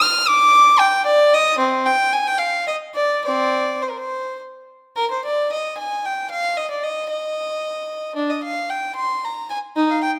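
A single violin opens the recording, playing a flowing, introspective baroque-style suite movement in triple metre with a supple, rubato feel. The player's gut-string, period-style tone is airy and slightly nasal, heard close and up front as the bowed line ranges from C4 to F6. At 5.0 s the opening phrase material returns for a second pass, carrying the same introspective mood through to the end at 10.1 s. A moderate recital hall reverb surrounds the instrument with a natural sense of space. The passage is cut from a longer piece, so it begins and ends mid-flow.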